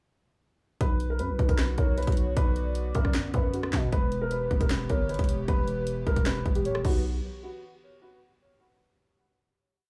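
A short, complete trap piece in B harmonic minor at 154 BPM with a half-time feel, menacing and melancholic in mood, built on a single hook that runs from 0.8 to 7.0 seconds before a final hit closes it out. A dark, mellow concert grand piano carries the looping melody, its boxy tone and audible action noise giving it an intimate, sampled quality, softened by a low-pass filter and trailed by digital delay. Behind it, a velvety synth lead adds a sparse, repeated counter-melody with vibrato, chorus and delay, while an airy, breathy pad with a warbling, vintage character holds sustained chords in the background from 1.2 seconds. Up front, the trap kit drives a half-time beat with fast hi-hat rolls, a hard-clipped kick, bright hats and a sharp snare layered with finger snaps, plus rim clicks and a crash. A growling, buzzy 808-style bass follows the kick with long sub notes and pitch slides, as the harmony moves from Bm to Em and back to Bm in a dry, small-room sound.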